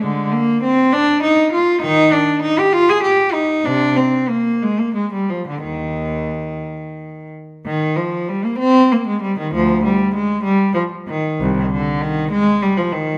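A lilting 6/8 pulse moves at 57 to 67 beats per minute in dotted quarters, stretched and relaxed by rubato. This baroque-style classical suite movement for solo cello is in Eb major, with a serene, dance-like mood. A single bowed cello plays up front for the full 13.2 seconds, ranging from C2 to Ab4 with a rich, reedy gut-string tone and light vibrato in period style. The opening phrase gives way to a contrasting second section at 7.7 seconds. A moderate recital hall reverb surrounds the instrument, and the clip is cut from a longer piece.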